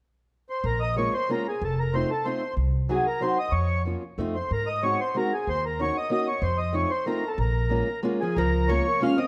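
Bittersweet and whirling, this brief musette waltz in Bb minor spins along at 187 BPM, led by an up-front, reedy accordion with a rich tone-chamber sound and slapback echo, over a woody, thumpy pizzicato upright bass and a dark, boxy fingerpicked acoustic archtop guitar whose finger squeaks come through the close, detailed microphones and light reverb, until a clean, hollow-body electric archtop adds a second line from 8.2 seconds.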